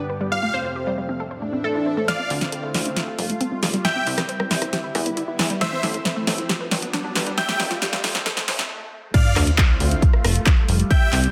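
A polished, punchy mix in a moderate room opens this excerpt of driving, soaring uplifting trance at 136 BPM, where a glassy, crystalline wavetable pluck with 12-bit grit and a lush, phased unison pad meet detuned unison-pluck arpeggios and a huge, thick supersaw melody, the pad, arpeggios and melody pumping with the sidechain over chords moving from Fadd9 to Am. At 2.1 seconds the build-up begins as a house drum kit with claps, rim clicks and a punchy snare arrives alongside a bright grand piano line high in the background, followed moments later by a funky, saturated analog bass, while filter sweeps and background swells and risers climb to a brief stop. The drop hits at 9.1 seconds with an up-front electronic kick, an impact and a sub drop under the Dm7.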